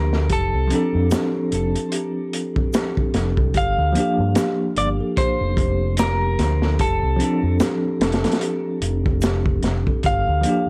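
An overdriven, round fingered electric bass sits up front in this brooding, melancholic trip hop excerpt at 74 BPM in G minor, joined by a crunchy, saturated breakbeat drum kit with a punchy kick, a clean, scooped electric guitar melody through tape echo, bell-like tine electric piano accompaniment with tremolo, a delicate, slightly out-of-tune music box playing arpeggios through analog delay in the background, and a tube shaker entering at 1.1 s, all captured in a dry, gritty recording with a swung 16th feel as the harmony moves between Dm7/F and Gm7.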